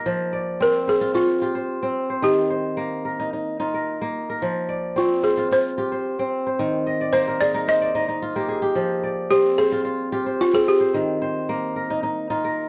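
A dark studio sound with moderate reverb frames this flowing, reflective West African traditional passage in F dorian at 110 BPM, cut from a longer piece, where a bright, ringing fingerpicked kora spins arpeggios throughout and adds a fill from 6.9 to 8.8 seconds, while a woody, buzzing balafon played with rubber mallets carries the melody slightly louder with a touch of plate reverb.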